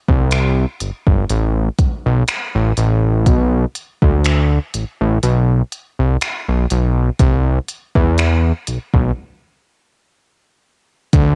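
A fat, detuned sawtooth bass with a filter sweep and a soft electronic kit of finger snaps, smooth hi-hat and gentle kick, given a cassette-tape grain, enter together at 0.1 s, both up front, in this sensual, moody contemporary R&B excerpt at a slow 61 BPM in 4/4 with lightly swung sixteenths and a break from 9.2 s, all captured as a dry home cassette recording.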